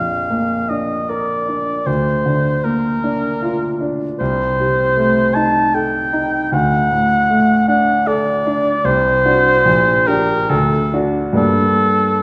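Heard from further back in a recital hall, the recording carries a wet reverb with a 1.5 second decay that surrounds the duo. This is a romantic classical piece for oboe and grand piano, elegiac and solemn, moving at 77 BPM in 3/4 with a flexible, rubato feel and tuned to A4 = 435 Hz. The mellow oboe sits up front and carries the melody between A4 and A5, sung in a classical style with light vibrato. The grand piano, smooth and vintage in tone, accompanies from Bb1 to Bb4 and is also placed close, a little below the oboe in level. The harmony opens on Bb, darkens through a diminished chord, and turns toward G minor by way of D and D7, settling on Gm at 11.4 seconds in this 12.2-second passage cut from a longer work.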